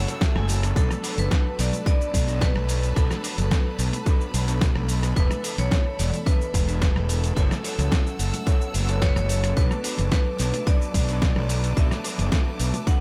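A straight 4/4 groove at 109 BPM drives this sleek, groovy nu-disco excerpt in B minor, anchored by a punchy, up-front electronic kick and a gritty, sampler-style soul kit of hi-hat, rim click, shaker and medium-tuned snare, with very quiet tambourine and congas beneath. A fuzzy, overdriven fingered bass sits prominently in the mix with sidechain pumping. Over this, the vibraphone carries the melody with hard mallets, its metallic, ringing tone colored by slow motor vibrato and tape echo. In the background, a twangy, slightly broken-up guitar riff, dark, detuned synth brass with chorus, and a clear, bowed string section holding pumping sustained chords fill out the harmony over F#m7, Bm7 and E7sus4. A clean guitar fill opens the excerpt and returns at 8.7 s alongside a faint electronic swell, and the whole mix sits in an echo-heavy digital ambience.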